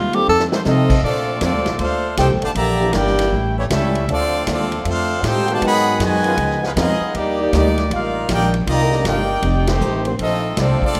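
A swinging 4/4 groove drives this energetic big band swing, with a punchy kick, medium-tuned snare, hi-hat, ride and crash from a drum kit in a big, natural room, a drum fill at 0.3 seconds, and a woody, thumpy gut-string upright bass played pizzicato up front. A brilliant trumpet section carries the melody with light vibrato, a cup-muted, veiled trombone section plays a soft second line, and a boxy, picked parlour acoustic guitar sits in the background. From 2.8 seconds a warm trombone section holds sustained chords in the background, and the band hits an accent at 9.6 seconds, all under light reverb.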